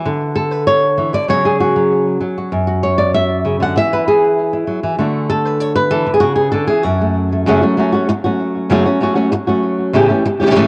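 Mournful and dramatic, this short flamenco excerpt at 194 BPM in F# minor features a lone dark, fingerpicked acoustic flamenco guitar, up front with audible finger squeak and colored by cassette tape and analog delay, moving through a chord sequence from D5 to a closing A7 and shifting to a new section at 7.5 seconds, all heard through a moderate spring reverb in a homespun cassette recording.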